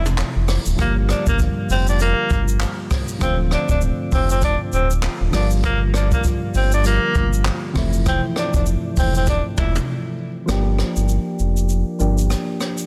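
Smooth and hypnotic, this afrobeats excerpt at 99 BPM in G dorian sets a breathy, whispered tenor saxophone melody with delay over soft, chorused electric-piano-like synth keys, a deep sine sub bass with octave, and a jazz brush kit with boomy kick, handclaps, rim click, shaker and toms, the saxophone dropping out at 9.7 seconds just before a brief break and a closing shift back to Gm7 at 10.5 seconds, all in a dense, heavily limited small-room mix.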